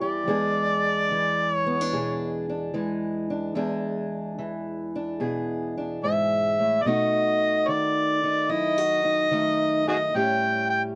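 Close, detailed microphones and light reverb bring this short acoustic country blues fragment, cut from a longer piece, up front, swinging at a slow 73 BPM in E mixolydian with a swaggering mood. An amplified, overdriven harmonica carries the melody in a jazz-style solo, its gritty tone marked by vibrato, tongue slaps and scooped notes. Beneath it, a dark, boxy parlour steel-string guitar is fingerpicked as accompaniment, moving from E7 to B7 at 6.9 seconds and A7 at 10.1 seconds.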